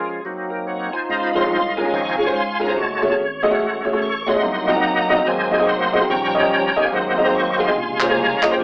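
A reedy tonewheel organ with key click, light overdrive, chorus vibrato and a fast rotary speaker opens this jubilant, uplifting uptempo gospel excerpt alone in a stop-time solo. At 1.1 seconds a woody, boxy, slightly detuned upright piano joins it up front, over a deep, thick sub bass sitting in the background, as the organ keeps soloing through rich jazz-tinged chords in D-flat major at 144 BPM with a swung feel. A crisp group handclap lands at 8.0 seconds, and the whole band sounds like it is playing live in one modest studio room, filtered through an AM-radio tone.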